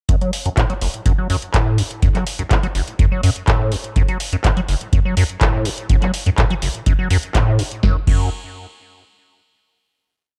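A straight four-on-the-floor pulse at 124 BPM in 4/4 drives this short, raw and hypnotic acid house piece, set in F# minor pentatonic. A deep electronic kick sits beneath a booming analog drum machine that supplies metallic programmed hats, both closed and open, handclaps, a tonal snare on the backbeat and a crash cymbal, with kick and machine kept dry. Up front, a squelchy, resonant square-wave acid bass runs a 16-step riff from F#1 to F#3, full of accents and slides, its smooth, fast-attack notes decaying under a filter sweep. That line is colored by phaser, overdrive and digital delay, and it pumps through sidechain compression, all inside a digital ambience. The groove runs from 0.1 to 7.8 seconds before the piece closes on a final note held until 9.8 seconds.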